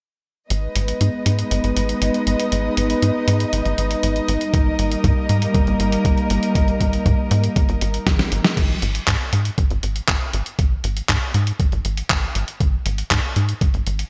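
This bittersweet, danceable italo disco excerpt in G# harmonic minor moves at 119 BPM in a straight 4/4. It opens at once with three parts: a muted chamber string section holding dark, veiled con sordino chords with vibrato, a tight sequencer bass and a dusty soul sampler-style drum kit. The bass is punchy and driving, a saturated, filter-plucked blend of sawtooth, square and sine tones with a moving notch. The gritty, tape-tinged kit brings handclaps, hi-hat, a medium-tuned snare and crash cymbal through gated reverb. A thumpy, compressed electronic kick drum joins at 4.5 seconds as the harmony shifts from G#m to D#/G#. After a drum fill at 8.1 seconds the strings stop, and bass and drums carry an unharmonised passage that settles on a G#5 chord, all in a bright 1980s-style digital production with lush hall reverb and the bass, kit and strings placed up front.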